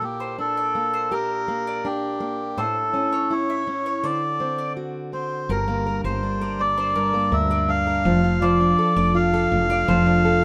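A reedy, breathy melodica carries the melody from the first moment, sitting up front over a fingerpicked, plugged-in steel-string acoustic guitar that plays the accompaniment in this reflective, wistful acoustic pop fragment, cut from a longer piece. The melodica has a nasal, mellow, vintage character with a band-limited edge, while the guitar sounds close and present with a concert-hall quality. Tucked in the background, a woody mandolin picks arpeggios on its double strings from 0.2 seconds onward. At 5.5 seconds a growly, round fretless electric bass enters with a hollow-body tone, direct and amped, deepening the second half as the harmony moves from G minor toward D minor over F. Light reverb surrounds the parts, and a faint mains hum lingers underneath.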